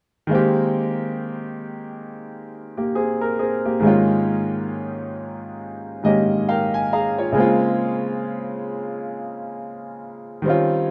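Late-night and longing, this short R&B excerpt features a solo concert grand piano, clear and up front with a deep, open bass, moving through rich, extended chords over a gently swung sixteenth-note feel. Midway, from 5.6 to 7.4 seconds, the piano slips in a brief fill before settling onto a minor chord. Light reverb and a small-room ambience give the rough home-demo sound an intimate closeness.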